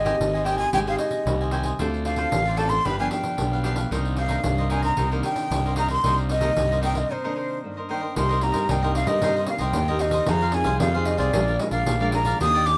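A breathy flute leads this lively, bittersweet samba-choro fragment, carrying the melody over a bed of crisp, picked cavaquinho, fingerpicked classical nylon-string guitar and an up-front electric bass with overdriven fuzz, while a jingly pandeiro joins at 0.1 seconds. The flute has a soft attack, vibrato and lifted highs, singing expressively in its upper register above the bright picking and the warm guitar. The harmony moves through Abmaj7, Dm7 and G7 before settling on Cm9, and a break arrives at 7.1 seconds. A new section begins at 8.2 seconds, shifting through Cm7, Fm7 and Bb7. A moderate studio reverb lends the ensemble a modest sense of space, with the gritty bass and the flute sitting most forward in the mix.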